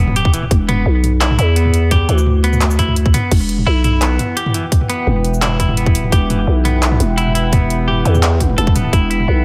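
A half-time groove at 171 BPM drives this heavy, dark drum and bass excerpt in E minor, where a tight, overdriven electronic kick sits up front beside a growling, buzzy 808-style bass, an overdriven kit of bright hats, handclaps, shaker, toms and crash in small room ambience, a clean, bright electric guitar picking arpeggios through analog delay over an Emadd9 chord, and, from 4.3 seconds, a deep, moody ambient pad of sustained chords with chorus, reverb and sidechain pumping.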